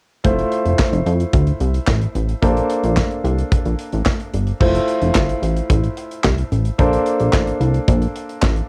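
Piano, synth bass and drums all start together at 0.2 seconds in this smooth, feel-good slice of early-eighties boogie funk, cut from a longer piece. A clear concert grand piano plays the accompaniment close up, with intimate, natural tone, deep bass and audible action noise, colored by cassette tape and plate reverb. The chorused synth bass is retro and glossy, blending detuned pulse and sawtooth waves with pulse-width modulation, a filter sweep, fast attack and sustained, mellow notes sitting up front. The modern studio drum kit sounds acoustic, airy and polished in a small room, with a punchy kick, medium-tuned snare, hi-hat, crash cymbal and handclaps, also passed through cassette tape. At 5.2 seconds a crisp, human group handclap joins quietly in the background, while the harmony keeps moving between Fmaj7 and Bbmaj9 in this home recording on cassette with light reverb.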